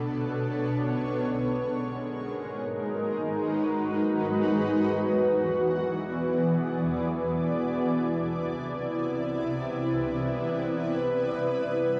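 Unfolding in free time, this serene, spacious ambient excerpt from a longer piece sets a cloudy, blurred granular pad up front on sustained chords moving from Bm7 through E7 and Cmaj7 to Gmaj7, touched at the start by a very quiet glassy glass-harmonics texture of drifting overtones until 4.4 s, joined at 6.4 s by a warbling, vintage organ-like drone with ensemble chorus in the background, and closed by very quiet ringing handpan arpeggios struck with sharp finger strokes from 11.0 s, all heard through a wet spring reverb on a cassette home recording tuned to A4 = 442 Hz.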